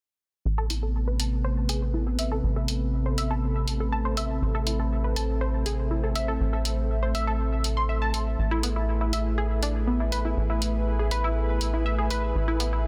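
Driving, melancholic melodic techno at 121 BPM in A harmonic minor, this excerpt sets a punchy sawtooth sequencer bass on A1 and an up-front analog hi-hat alongside a nasal, detuned arpeggio synth with chorus, dub echo and a filter sweep, while a thick, warbling unison pad holds Amadd9 moving to E/A at 8.4 seconds and a deep, moody ambient pad with built-in reverb sits in the background of a dense, heavily limited modern master.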